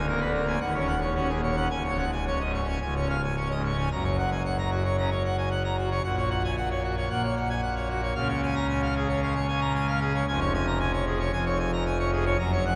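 Brilliant and majestic, this classical organ toccata, cut from a longer piece, features a solo pipe organ at full registration, its bright mixtures and romantic voicing placed up front and spanning from deep pedal notes to a high treble. An opening passage of restless chords gives way at 3.9 s to a broader second section that settles onto the home chord before leaning back toward the dominant. A long, wet cathedral reverb lets each chord bloom and hang in the vast space of the church.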